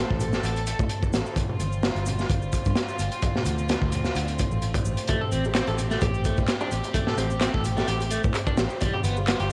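A gritty home cassette recording with light reverb and small-room ambience carries this funky breakbeat excerpt, built on a saturated, up-front drum kit with a punchy kick and a dark, rolled-off top, plus layered electronic shaker and handclaps. A round, foam-muted fingered electric bass sits under reedy bowed strings holding sustained chords with light vibrato and sidechain pumping, while very quiet congas and bongos add soft-handed vintage colour. At 5.1 seconds a compressed, slightly broken-up electric guitar enters with a picked riff, shimmering through tremolo and tape echo.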